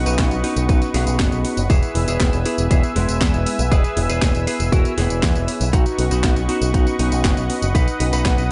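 A house kit of handclaps, hi-hat, cracking snare and tambourine enters at 0.1 s in this sunny, danceable italo disco excerpt, joined at 0.2 s by a punchy electronic kick that reinforces the straight 4/4 pulse. The kick and kit share a tape-tinged, layered, produced sound, re-recorded in a large room. Up front, a bright picked electric bass through an envelope filter carries the low end. Mellow, clean tine electric piano stabs, heard through built-in speakers, sit over a smooth, detuned sawtooth pad with a slow attack and chorus, its sustained chords moving from Badd9 to E at 1.7 s and back again at 5.7 s. A lightly driven lead guitar, slightly broken-up and compressed, carries the melody with delay, and the whole excerpt is set in a digital ambience.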